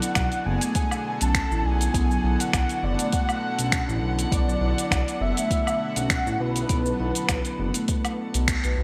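Bright 1980s-style digital production and a lush hall reverb frame this mystical organic downtempo excerpt in B dorian at 101 BPM, where a breathy, flute-like synth lead with ensemble chorus and delay carries the melody over reedy, gut-toned string chords and a smooth, saturated synth bass that pump with sidechain, a gritty, up-front sampler-style kit of finger snaps, hi-hat, shaker and woodblock in gated reverb, a deep overdriven electronic kick, and mellow soft-mallet marimba arpeggios with delay under a filter sweep, the band hitting an accent at 8.5 seconds over a Bm7 chord.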